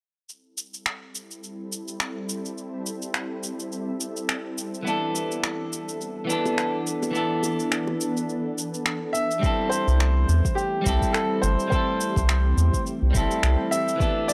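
Sunny and relaxed, this sunset chillout excerpt at 105 BPM with a gentle 16th-note swing opens with overdriven electronic shaker and finger snaps, adds a shimmering, detuned ambient pad with chorus at 1.3 seconds, a clean picked electric guitar with tape echo at 4.8 seconds, and a brief touch of very quiet high-tuned bongos, before a bright concert grand piano melody with tape echo arrives at 9.1 seconds, followed by a soft overdriven electronic kick at 9.4 seconds and a deep, nasal analog bass with transformer saturation at 9.9 seconds, all framed by light reverb and a gritty cassette-tape sound.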